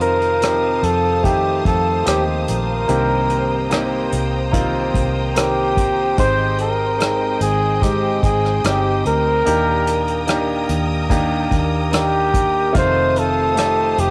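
Tender and emotional, this slow 73 BPM pop ballad places a mellow, up-front trumpet with light vibrato and scooped jazz-style notes over a clear, present baby grand piano, lush bowed strings, a jumbo steel-string acoustic guitar picking arpeggios with tape echo in the background, a dark, round, foam-muted electric bass, and an airy small-room drum kit played with bundle sticks on hi-hat, punchy kick and rim click, all moving through F7, Cm7, Abmaj7 and Ebmaj7 with the soft haze of a home cassette recording and light reverb.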